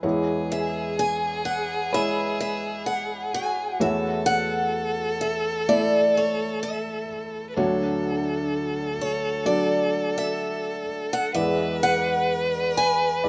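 Acoustic folk-pop ballad at 64 BPM in 4/4, hopeful and heartfelt, moving through E6, A/E, Dmaj7 and E7 in this short section cut from a longer piece. A felt-muted upright piano with soft, mellow tone and audible action noise plays the accompaniment alongside a rich, expressive solo violin with vibrato and portamento on a second line, both up front from the start. At 0.5 s a boxy, parlour-toned picked steel-string acoustic guitar carries the melody with finger squeak, while an electric guitar through a small old amp adds slightly broken-up, compressed arpeggios with tremolo in the background, all in a rough home demo mix with light studio reverb.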